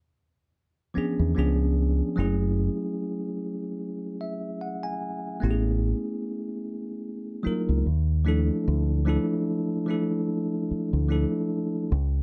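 A deep, round dub bass, fingered and punchy, sits up front in this soulful, relaxed R&B cut, entering at 1.0 seconds and holding down the low end with a dark, amped tone. Over it, a bell-like tine electric piano supplies bright, clean chords, arriving just before the bass at 0.9 seconds and playing a brief fill between 3.8 and 5.4 seconds. The harmony drifts through lush seventh and extended chords, moving from minor and dominant colours into a major seventh and a suspended colour before settling on a minor add-nine sound. A gentle sixteenth-note swing gives the groove an easy, laid-back lilt, and the tuning sits slightly below standard pitch. The dry, close production recalls a 1970s studio, keeping both instruments direct and intimate in this short excerpt from a longer piece.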